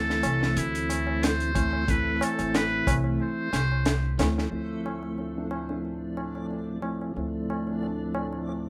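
A buzzy, metal-muted trumpet with tape echo opens this smoky, melancholic trip hop excerpt over a soft, flute-like tonewheel organ, which runs through a slow rotary speaker with tremolo and echo and a filter sweep across its first 4.5 seconds, and a woody, thumpy pizzicato upright bass. A gritty, saturated breakbeat kit with a punchy kick and a high-tuned snare sits up front in a lightly swung groove, joined by low-tuned tabla and a dreamy reversed texture swelling in the background, while the trumpet falls silent at 4.2 seconds. From 6.4 seconds a deep, moody, detuned pad with chorus adds sustained chords beneath the rough, lightly reverberant home-demo sound.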